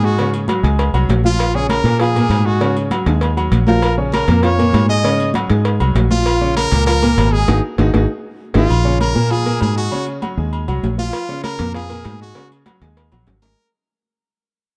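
Salsa at a driving 197 BPM in Bb minor, this danceable cut from a longer piece alternates between Ab7sus4 and Bbm in a dark, warm production with light reverb. A brilliant, forceful trumpet carries the melody with light vibrato and scooped notes, close-miked and punchy in a pop style, while a bright concert grand piano with deep bass and short sustain fills out the accompaniment. The fingered electric bass sits up front, round and foam-muted, anchoring the low end. Damped, high-tuned congas played with soft hands sit in the background, joined from 0.2 seconds by ringing metal-shell agogo bells and timbales, and by low-tuned, saturated cowbell and bongos that drop out at 8.6 seconds and return at 11.1 seconds. Drum fills punctuate the groove, and a band accent on Ab5 around 7.5 seconds leads into a fade-out that begins at 8.7 seconds.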